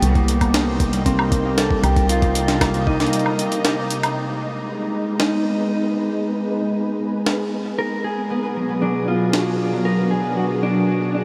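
IDM at 116 BPM, melancholic and glitchy, with a clean, dark electric guitar melody, silky vintage string-machine chords pumping under ensemble chorus, and bright fingerpicked harp arpeggios ringing through delay, while a woody FM bass and a thumpy, gritty pitched-up kick drop out near 3 seconds, the jungle sampler-style kit of hi-hat, snare and woodblock runs until 9.4 seconds, and a very quiet flickering granular texture glimmers beneath, all soaked in a huge dreamy reverb in this excerpt from a longer piece.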